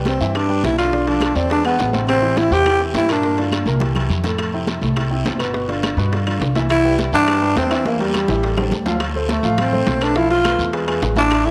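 Lively and sunny, this fast Afro-Cuban jazz excerpt in C major at 208 BPM sets a breathy, growling tenor saxophone up front over a woody pizzicato upright bass and a natural-sounding grand piano, while ringing high-tuned congas, distant metal-shelled timbales, a raspy guiro and very quiet tight bongos and dry claves fill out the percussion, with the saxophone pausing from 3.4 to 6.7 seconds as a drum fill enters at 3.5 seconds, all framed in a moderate plate reverb.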